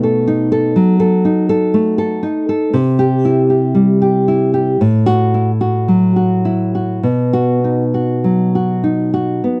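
A dry, close recording with light reverb captures a melancholic, wistful romantic excerpt for solo classical guitar in 4/4, where the up-front nylon-string guitar, thumb-plucked with audible finger squeak, moves with rubato freedom within a range spanning A2 to A4 through B7, C, F#m7/A and B across its 9.6 seconds.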